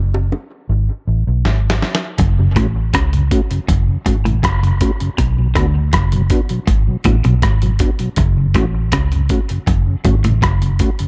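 A dark, round, foam-muted electric bass opens this hypnotic, meditative 80 BPM dub reggae cut in F# minor, joined briefly by tight, high-tuned bongos treated with dub echo, before a gritty, compressed sampler-style drum kit with a thumpy kick rolls in on a fill at 1.5 seconds, and at 2.2 seconds a bright, picked clean electric guitar riff, also trailed by dub echo, arrives, followed moments later by a soft, flute-like tonewheel organ turning on chorus vibrato and slow rotary speaker over the F#m and Bm chords, all in a dry, close-sounding mix.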